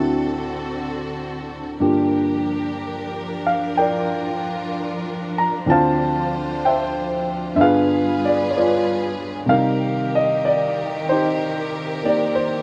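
Jazz ballad with an intimate, smoky mood and a gently swung feel, where a dark, mellow grand piano sits up front playing accompaniment through chords such as D7, Gm7 and G7b9 while a lush, bowed string section with soft attack and expressive vibrato sustains chords close behind it, all in light reverb, in a short cut from a longer piece.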